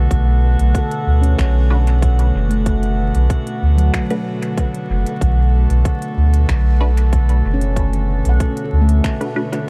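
Hazy and spacious, this ambient dub excerpt from a longer piece moves at 94 BPM in a straight 4/4, resting on a Bm7 chord in B minor with tuning set to A4 = 436 Hz. An airy, breathy pad holds sustained chords through a chorus, while a handpan rings out meditative arpeggios struck with the fingertips and carried on dub echo. Underneath, a soft, round sub bass sits up front until 9.0 s, and a glassy texture of drifting overtones floats quietly above with chorus and its own reverb. An overdriven electronic kick keeps a tight pulse, joined by a crisp hi-hat and finger snaps from a small-room drum kit that also has overdrive and dub echo. From 1.7 s a muted, filtered chord stab with phaser and echo sits in the background, and vinyl crackle lends the whole mix a dusty digital ambience.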